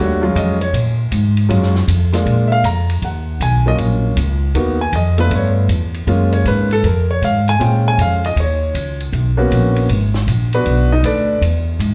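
A live club recording heard through the venue's PA, with light club reverb around a short excerpt cut from a longer piece. It is a swinging, smoky jazz piano trio in 4/4 with a firm swing feel, built around a concert grand piano that carries the melody and solos throughout, set up front with an intimate tone, audible action noise, deep bass and long sustain, plus plate reverb and slapback echo. The upright bass sits up front as well, plucked, woody and growly with steel strings, playing from 0.0 seconds beneath the piano. A compact cocktail drum kit enters at 0.4 seconds, dry and natural, with dark ride cymbal, hi-hat, a high-tuned snare and a punchy kick, mixed well behind the other two. The harmony moves through rich minor and extended chords such as Ebm11, Gbmaj9 and Abm11, and the piano drops out at 11.4 seconds while bass and drums carry on to the end.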